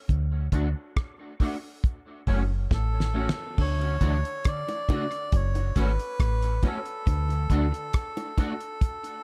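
Dub reggae at 69 BPM in a meditative, deep mood, cut from a longer piece, it opens on a break with a round, foam-muted fingered bass and a damped 70s drum kit with a fat snare, tight kick and dark cymbals up front, while a twangy, slightly broken-up electric guitar treated with ensemble chorus, low-pass filter and tape echo supplies accompaniment; as a drum fill begins, a reedy, breathy, nasal melodica with tape echo takes up the melody from 2.7 seconds, a very quiet, scooped semi-hollow guitar adds clean arpeggios from 3.6 seconds, and low-tuned bongos with tape echo join in the background at 4.7 seconds, over alternating D and F#m chords in a warm small-room production.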